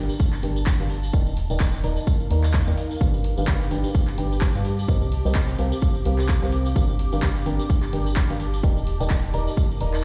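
Energetic and bittersweet, this piano house excerpt in G minor moves at 128 BPM with a swung 4/4 feel, as a clear, short-sustained baby grand riff with dub echo and low-pass filtering pumps over a dark, hollow, organ-like FM bass with tube saturation, an ethereal detuned pad with ensemble chorus from 0.3 seconds, a compressed tambourine, an up-front overdriven punchy kick, and a house kit of handclaps and hi-hat, all sounding as if played through a big system in a bare stone room across chords from Gm through Ebmaj7, G7 and Cm7.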